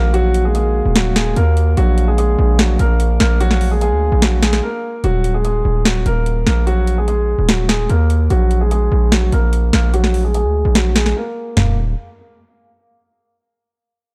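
A half-time trap groove in 4/4 drives this menacing, melancholic hip hop excerpt, with an electronic drum kit of sharp snare, metallic hats and toms sitting up front beside a heavy, saturated 808-style bass whose aggressive distortion and noise layer dominate the low end. A warm, open concert grand piano carries the melody through a low-pass filter and tape echo, while a dark, distant French horn section holds classical-style chords in the background until 5.0 s, when a filter sweep takes hold of the piano and runs to 11.6 s. Brief breaks punctuate the dry, moody production.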